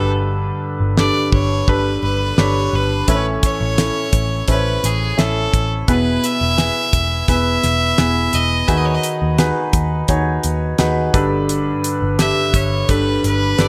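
A biting, earthy fiddle carries the melody with light vibrato over a natural concert grand piano with a touch of chorus, a round, foam-muted picked electric bass and a damped 70s drum kit with a fat snare that enters at 1.0 seconds, giving this anthemic, piano-driven pop cut at 86 BPM a bright 1980s-style digital sheen in a small room moving through Gadd9, A, E and B6/D#.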